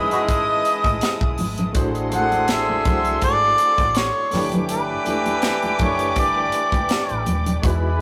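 An 82 BPM groove in 4/4, with a light swing on the sixteenths, drives this smooth, romantic slice of lush 1970s-style soul, cut from a longer piece. It is built on a tight, dry funk drum kit with a high-tuned snare, soft-handed congas and a dark, foam-muted fingered electric bass. Up front, a mellow harmonica carries the melody with light vibrato, scooped notes and tape echo until 7.2 s, while a reedy electric piano with overdrive and fast tremolo accompanies, punchy horn stabs ring with tape echo, and a bowed string section adds an even second line over chords moving from Amaj9#11 to D7/A and G6, all in a rough rehearsal-room sound with moderate reverb.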